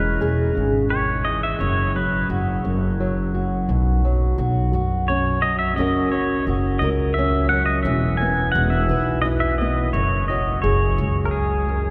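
A fingerpicked old ladder-braced acoustic guitar with boxy, dark old strings and a pizzicato upright bass with a woody, steel-strung tone play from the very start of this gentle, nostalgic acoustic folk fragment in a slow, straight 6/8. Over them, from the same moment, a clean, compressed pedal steel guitar played with fingerpicks takes a solo built on slide and volume swells, drifting through chords such as C#m/E, Bsus2 and Esus2, with a brief break in the harmony at 2.6 seconds. All three parts sit up front, bathed in a long, cathedral-like reverb from a church or concert hall.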